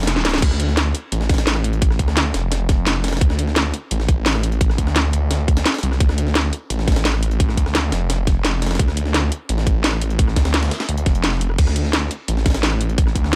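A snarling, detuned sawtooth bass growls up front through distortion and overdrive, sustained between F1 and D2 in D minor, driving this aggressive, tense fragment of dark technical drum and bass at 172 BPM. After a brief drum fill and break, the drop lands at 0.4 seconds, where a tight electronic kick joins a layered kit with a cracking snare, metallic hats, rim clicks and crashes. Behind them sits a gritty, pitched-up, tape-toned sampler-style jungle kit, compressed and high-passed, all in a dry, close sound.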